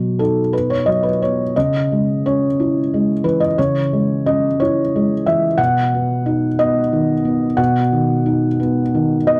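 A dark, warm production with light reverb frames this short cut from a longer neoclassical minimalist piano piece, intimate and melancholic in mood. A lone felt-muted upright piano, soft and mellow under thick felt, sits up front with its action noise plainly audible, ranging from B2 to F#5 in a rubato 6/8 at about 59 BPM, tuned to A4 = 438 Hz. The harmony rests on B, moves to C#m at 1.5 seconds and returns to B at 5.6 seconds before the excerpt ends at 9.4 seconds.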